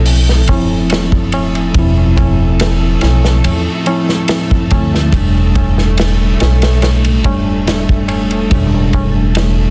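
Hypnotic and smoky, this short trip hop passage settles into a straight 4/4 groove that is cut from a longer piece. A bright, bell-like tine electric piano carries the accompaniment with a clean, direct tone, colored by tremolo and tape echo, while string machine cellos sit further back with soft-attack sawtooth chords that carry a sub octave, ensemble chorus and a touch of vintage sampler grit. Up front, a woody pizzicato upright bass with steel strings anchors the low end, joined by a punchy vintage drum kit whose dark cymbals, medium-tuned snare and rolled-off top breathe in a pumping small room. A high-tuned, ringing tabla adds a close, dry shimmer in the background. The harmony moves from a rootless Dm7/E to G69/E at 5.1 seconds, and the whole is framed by light reverb and a dense, heavily limited modern master.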